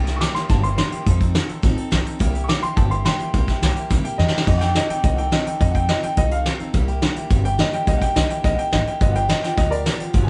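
Picked steel-string acoustic guitar and thumpy, woody pizzicato upright bass open this retro, rollicking rockabilly excerpt at 212 BPM, joined at once by a vintage brush drum kit with a fat snare, punchy kick and dusky cymbals that rolls through a fill at 4.2 seconds, while a dark, mellow upright piano carries the melody over C7, F7 and G7 changes in a live-sounding studio room.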